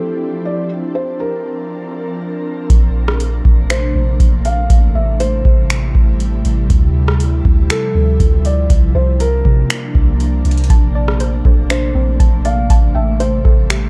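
Atmospheric cloud-rap hip hop in Bb lydian, this floating, blissful passage moves at 120 BPM in a half-time feel, cut from a longer piece. It opens with a felt-muted upright piano carrying the melody, its thick felt and audible action noise giving an intimate, mellow tone softened by a low-pass filter and digital delay, over an ethereal, airy pad of detuned unison chords with slow attack, ensemble chorus and built-in reverb, pumping under sidechain. At 2.7 seconds a booming analog drum machine arrives up front with a deep kick, metallic hats, finger snaps and rim clicks re-recorded in a large room, joined by a soft, round 808-style sine bass that decays after each note. The harmony cycles through Dm11, C9sus4, Bbmaj9 and Am7, with the pad sustaining each change. From 10.7 seconds a gentle, wave-folded pluck adds quiet arpeggios coloured by chorus and delay. The production is dark and warm, with little reverb on the overall mix.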